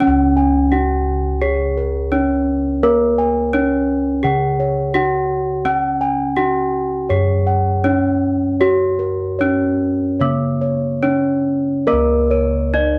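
A bright, ringing bronze metallophone carries the melody up front in this shimmering, serene gamelan excerpt at 70-85 BPM in C# pelog barang, over round, mellow bossed-gong arpeggios and a soft, beating gong bass, with a dark, smooth second metallophone adding arpeggios from 11.9 s, all set in light reverb.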